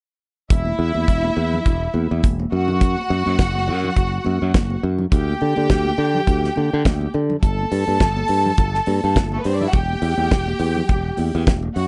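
A damped 70s drum kit with a fat snare and tight kick drives this glamorous disco passage in E minor at 104 BPM with a light sixteenth-note swing, alongside a punchy, growly fingered electric bass, a lush bowed violin section with vibrato carrying the second line, and bright, high-tuned congas in the background, moving through Dsus4 at 5.1 seconds and Em at 9.7 seconds with little reverb.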